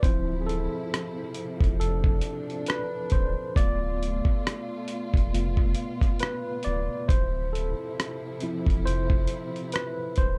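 The recording sounds close and dry, with little reverb, and the gritty, compressed drums and the tine electric piano sit up front. This nostalgic, melancholic lo-fi hip hop fragment in D dorian moves at a slow 68 BPM in 4/4, with a gentle swing on the sixteenths, and the tuning sits slightly under standard pitch. The worn, slightly out-of-tune electric piano takes a solo across the full 10.4 seconds, its clean tone shaded by medium tremolo, a low-pass filter and a combo amp. Beneath it, a lush bowed string section holds smooth, even chords with vibrato through a low-pass filter, while a deep, round sub bass with a fast attack sustains low notes. The sampler-style soul kit, re-recorded in a small room, adds a thumpy kick, hi-hat and rim clicks. The harmony opens on Dm9, shifts to Dm6 at 3.6 seconds and returns to Dm9 at 7.1 seconds.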